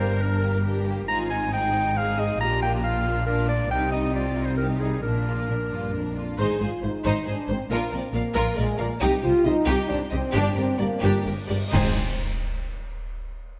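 A bright, punchy solo clarinet sits up front from the start of this heroic, soaring film-score passage in three, playing a second line until 6.1 seconds over a lush, distant string bed: violin sections on the vibrato-rich melody and a second line, violas with expressive portamento, and smooth cellos and soft-attacked double basses anchoring the bass. A mellow French horn section enters at 6.0 seconds with sustained chords while the music slows toward a full-ensemble accent at 11.7 seconds. Dark, close and dry percussion (a cymbal swell, clash cymbals and concert bass drum) arrives at 9.0 seconds, all in a moderate scoring-stage reverb in a passage cut from a longer piece.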